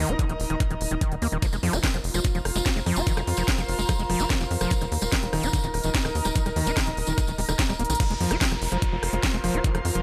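A driving 146 BPM straight 4/4 psychedelic trance pulse, alien and intense, is built on a knocking, up-front electronic kick from 0.2 seconds and a drum kit of cracking snare, crisp hats, rim click and crash, under a tight, punchy sequencer bass, a squelchy, gritty acid riff with distortion, tape echo and sidechain pumping, an airy, breathy pad with chorus, a jingly tambourine from 1.4 seconds, an evolving, warbling wavetable pad with phaser entering at 1.9 seconds, and a background downlifter as a drum fill leads into the drop at 8.0 seconds, all in light reverb.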